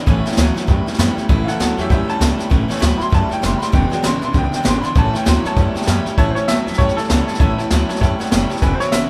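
Rockabilly with a swung, rollicking feel, this upbeat fragment of a longer piece opens on a honky-tonk piano solo over a jangly, metallic tack piano, a twangy, slightly broken-up electric guitar riff, a dreadnought acoustic guitar set in the background, a thumpy gut-string upright bass, and an up-front brush kit with a boomy kick and a high-tuned snare. At 6.2 s the music moves into a new section, and at 6.3 s a brilliant, slightly detuned upright piano takes the melody, with audible action noise and long sustain. The band sounds as if it is playing live together in one room, with light reverb.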